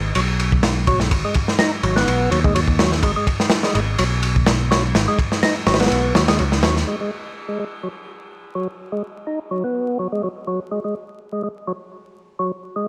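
A fat, lightly overdriven tonewheel organ riff with percussive third-harmonic attack, slow rotary speaker, vibrato, digital delay and a low-pass filter leads this swaggering, energetic 125 BPM breakbeat piece in G# minor. Beneath it sit a growly, punchy picked electric bass and a crunchy, gritty breakbeat kit of tight kick, snare and dark ride; the kick drops out at 5.9 s and the bass and drums fall away near 6.9 s, leaving the organ alone until 12.9 s over light reverb and vinyl crackle.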